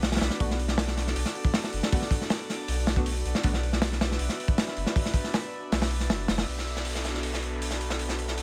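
Raw and nostalgic, this drum and bass cut with jungle roots moves at 158 BPM in B minor, opening its drop on a Bm7 chord. A crunchy breakbeat kit sits up front, its saturated, gritty sound coming from a small acoustic room with a punchy kick, a medium-tuned snare, hi-hat and a rolled-off top. Beneath it, a soft dub sub bass holds deep, round tones, while an airy, breathy pad sustains detuned chords with a chorus shimmer and a noise layer. A drifting glass-harmonics texture floats high above throughout with its own built-in reverb, and between 0.4 and 3.5 seconds a deep, mellow chord stab sounds in the background, coloured by phaser, chorus and dub echo. At 6.5 seconds an electronic downlifter enters in the background as the section turns, all set in a light studio reverb.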